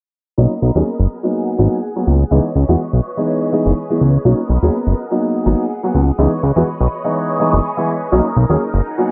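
House at 124 BPM in B major with a light 16th-note swing, this short, funky and sunny cut cycles through Bmaj7, G#m7, C#m9 and F#13sus4 under a filter sweep running from 0.4 to 9.1 seconds. Up front, a fat, detuned sawtooth analog bass anchors the low end beside a dark, boxy grand piano playing phased, filtered accompaniment. Softer in the mix, a swirling vintage string machine holds bright sustained chords through ensemble chorus and phaser, all set in a small room with light reverb.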